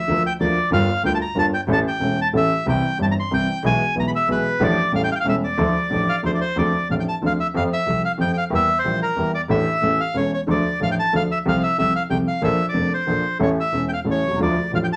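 Sultry and melancholic, this rubato tango excerpt in D minor moves at 185 BPM in 3/4, its opening phrase returning at 6.6 seconds over chords that drift from Bb/D and Gm7 toward A7 and settle back on Dm. A reedy, full, close-miked bandoneon carries the melody up front, while a grand piano with a vintage, smooth tone and long sustain shares the foreground with the accompaniment. Beneath them, a bowed double bass plays with vibrato and a focused, clear sound in the background, all set in a wet studio ambience.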